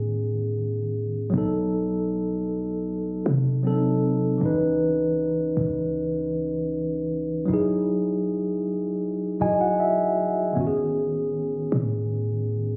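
Smooth and tender, this slow R&B excerpt at 78 BPM in E major, tuned to A4 = 437 Hz, sets a mellow, up-front tine electric piano over lush chords such as Amaj9#11, C#m9 and Emaj9 against a deep, boomy 808-style bass with a sine-like, fast-attack tone, with the piano adding a fill from 9.0 to 10.6 seconds, all heard through light digital ambience in a phone recording of the room with studio reverb and compression.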